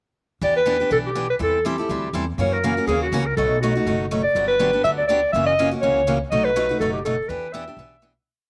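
At 0.4 seconds a clarinet, a picked steel-string acoustic guitar and an upright bass enter together in this fiery, virtuosic piece of acoustic string swing in E minor, moving at a brisk 245 BPM in 4/4 with a light swing on the eighth notes. The clear clarinet carries a jazz-style, motif-based solo melody built from song-like phrases, with vibrato and scooped notes and a touch of slapback echo. The guitar, warm with fresh strings and also touched by slapback echo, plays four-to-the-bar rhythm with short, accented strokes on two and four. The woody, thumpy pizzicato bass holds a two-beat root-and-fifth line with walk-ups through a progression that moves from Em7 through F#7, B7 and Gmaj7 before settling back on Em7. The dry, open-air sound keeps clarinet and guitar up front, and the short piece fades out from 6.7 seconds to its close at 8.3 seconds.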